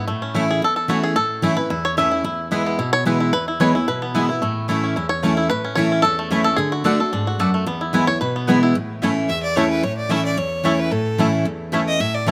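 Bluegrass in a rustic, joyful mood at a brisk, swung 221 BPM, this excerpt from a longer piece opens with a twangy, fingerpicked five-string banjo carrying the melody over full-bodied picked dreadnought guitar and woody mandolin stabs tucked in the background, moving through A, E and D chords before a clear, focused bowed fiddle with light vibrato takes the lead up front at 9.3 seconds, all captured in a rough home demo mix with light reverb and small room ambience.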